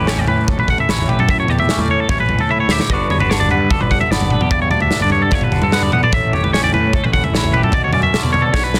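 A bright, twangy, clean electric guitar with a phaser sits up front picking out accompaniment chords, while a second warm, clean guitar spins high arpeggios. A fuzz-drenched, overdriven picked bass and a punchy acoustic drum kit with a medium-tuned snare play alongside them from the start, and drum fills land at 2.5 and 8.5 seconds. This wistful, restless math rock and midwest emo fragment moves at 149 BPM in a straight 4/4 through A13, Gmaj7 and Bmadd9, with light small-room reverb and a dense, heavily limited modern master.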